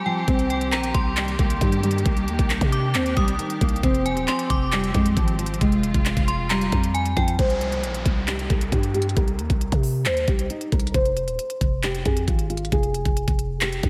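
Brooding, melancholic trap-flavoured hip hop, cut from a longer piece, moves in a half-time feel that gives its minor-key chords room to settle. A thumb-plucked nylon-string guitar enters at 0.1 seconds, carrying the melody through a low-pass filter and delay. Its classical, acoustic tone is set against a growling, buzzy 808-style bass and an up-front trap kit of knocking kick, crisp hi-hats and handclaps, both arriving at 0.3 seconds. In the opening section, a lush bowed string ensemble holds sustained chords with vibrato, while a bright, inharmonic FM bell rings out a second line above it, treated with chorus and delay. At 7.4 seconds the strings and bell drop away, a filter sweep begins on the guitar, and a faint electronic downlifter runs until 10.9 seconds. The whole mix is steeped in a dreamy hall reverb that lends it a soft, haunted glow.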